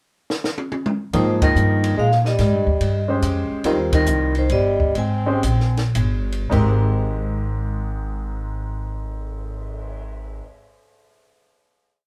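A ringing vibraphone with medium hard mallets and slow motor vibrato carries a motif-based melody in this short, complete modal jazz piece in 3/4 and Ab major, swung at 100-144 BPM with a spiritual, open mood, while a breathy, whispered tenor saxophone shadows it with a harmony line mostly in sixths. A compact cocktail drum kit with dark cymbals, a high-tuned snare and a punchy kick opens with a fill from 0.3 s before the band enters at 1.1 s, where a clear grand piano comps in quartal voicings over an Abmaj9 and a woody pizzicato upright bass walks up front. The band begins slowing down at 3.6 s, and the vibraphone and saxophone stop at 5.9 s, leaving the piano, bass and drums to hold a final chord in a moderate small-room reverb.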